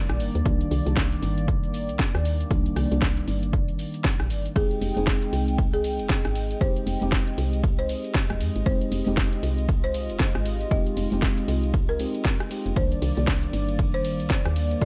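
A dry mix frames this moody deep house excerpt in F minor, set at 117 BPM in 4/4 with a swung sixteenth-note feel. From the opening, a hollow, flute-like pad holds sustained chords under chorus and sidechain pumping, while a mellow FM electric piano with a dark, full-bodied tone plays stabs shaded by chorus, phaser and tape echo. A woody, round FM bass with tube saturation pumps underneath, joined by an overdriven house kit of cracking snare, bright hi-hats, ride cymbal, rim click and shaker. A punchy analog kick enters at 0.5 s and sits up front as the loudest part. At 4.6 s a folk marimba struck with medium hard mallets takes the melody, its rustic, smooth hardwood tone trailed by tape echo, as the harmony moves from Cm9 to Fm9 before returning to Cm9 at 12.8 s.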